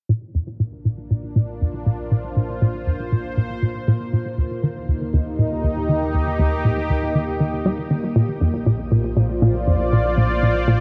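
Bathed in a huge ambient reverb and colored by cassette tape, this cosmic, luminous stretch of sequencer-driven space music moves at 119 BPM in Bb major, cycling from Bbadd9 to Eb and back. Up front, a hollow, bouncy square-wave pluck with a noise layer plays the riff through chorus, tape and analog delay under a filter sweep, while a bright, detuned sawtooth pad with a sub octave fades in, holding evolving chords in shimmer reverb. Beneath them, a round, deep triangle-and-sine bass sits in the background, fading in across the full 10.8 seconds.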